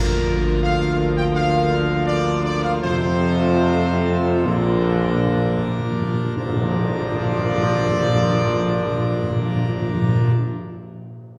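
Classical ceremonial fanfare in Bb major, regal and triumphant, in 4/4 at 58-87 BPM, slowing through its first 6.4 seconds as a dark, smooth-topped trumpet section carries the melody over sustained chords from a brilliant, majestic full pipe organ up front, a clear trombone section, a mellow French horn section in the background, and a mellow tuba on the bass line. Round, soft-mallet timpani on calf heads enter at 2.8 seconds and play a fill leading into a band accent at 6.4 seconds, where a dark tam-tam joins in the background. The recording is heard from further back in a wet scoring-stage reverb, while the timpani and tam-tam sound close and dry, in this short cut from a longer piece.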